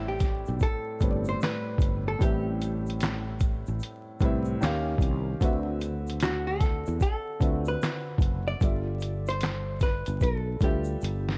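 A dark, clean hollow-body jazz guitar melody opens this reflective, hazy lo-fi hip hop piece in A minor at 75 BPM, over a soft, felt-muted upright piano and a growly fretless electric bass with analog chorus that sits up front. At 0.2 seconds a compressed, pitched-down sampler-style drum kit with a thumpy kick, fat snare, hi-hat and handclaps comes in with a 16th-note swing, while a grainy tube shaker stays in the background. The dry mix is coated in vinyl crackle as the chords move from Am11 through D#9 and D13 to G13, and a drum fill at 11.0 seconds closes this excerpt of a longer piece.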